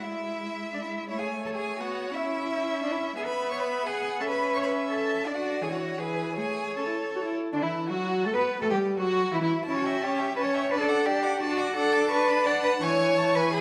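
The first violin carries the melody in a warm, smooth, even voice with vibrato, ranging up to D6 in this lively, cheerful classical-period movement for string quartet. The music moves quickly at 170 BPM in 3/4, with a rubato feel that lets the phrasing breathe. Beneath it, the second violin sings a rich second line with expressive portamento from a more distant position. The viola sits up front with a warm, focused accompaniment, and the cello anchors the bass with a smooth, vibrato-coloured tone. The opening in A major gives way at 7.5 seconds to a second section in D major. All four players share a recital hall whose wet reverb adds a lingering bloom, and the excerpt breaks off at 13.6 seconds on an E chord.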